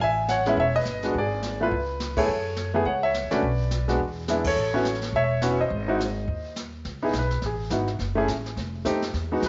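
A clear, intimate grand piano with audible action noise and a touch of slapback echo leads this moody, late-night swinging jazz trio fragment, backed by a woody, thumpy pizzicato upright bass on gut strings and a softly mixed brushed drum kit with a boomy kick in a small, lightly reverberant room, with the band hitting accents at 2.1 and 4.4 seconds before the piano takes a solo from 6.9 seconds.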